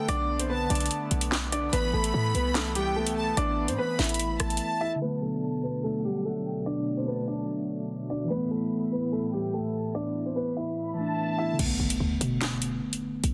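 Cold and menacing, this short drill excerpt from a longer hip hop piece moves at 146 BPM in a half-time feel, set in B phrygian and circling Bm7 and Asus2. A baby grand piano carries the melody up front with long sustain, while a clear, close studio violin section bowed with light vibrato holds a high second line through delay, and a smooth, detuned sawtooth pad sustains chords beneath with chorus and tremolo. A punchy, tight 808-style bass with a sine body and noise layer drives alongside an electronic drill kit of sharp snare, metallic hi-hats, rim clicks, handclaps and crash, but both drop out at 4.6 seconds. From 5.0 seconds a clean tine electric piano, heard through its built-in speakers, takes up accompaniment as a filter sweep runs over the passage. At 11.6 seconds the bass and drums return as a distant electronic impact hits, all within light digital reverb and a dense, heavily limited, low-passed master.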